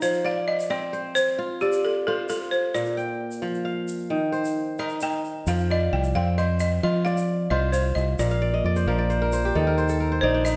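Joyful and warm, this short cut from a longer West African traditional piece moves in a straight 12/8, with a woody, buzzing balafon played with hard rubber mallets carrying the melody up front beside a crisp, ringing fingerpicked kora spinning arpeggios. A grainy, mellow tube shaker sits further back, and a dark, round fingered electric bass enters at 5.5 seconds, punchy and direct. The kora adds a fill from 8.3 seconds, all set in a wet recital hall reverb.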